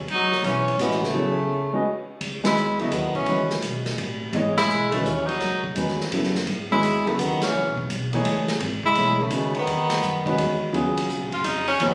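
Hypnotic and searching, this short modal jazz passage, cut from a longer piece, moves at a swung 169 BPM in 3/4 time in C# minor, its harmony shifting from Gbm11 to C#m11 at 2.2 seconds and on to Ebm11. Woody, thumpy pizzicato upright bass and a vintage drum kit with dark cymbals, a punchy kick and a rolled-off top sit low in the mix beneath a clear tenor saxophone, whose light vibrato and scooped notes carry the melody up front yet with a distant, roomy quality. A trombone with a metal mute adds a buzzy, thin second line until 10.6 seconds, while a dark, mellow baby grand piano with short sustain enters at 0.8 seconds to provide accompaniment. A break arrives early, the band punches out accents at 2.4, 4.5 and 7.4 seconds, and the tenor saxophone steps out for a brief solo near the end. The sound is captured on a phone in the room with moderate studio reverb, and the drums have a pumping, small-room character.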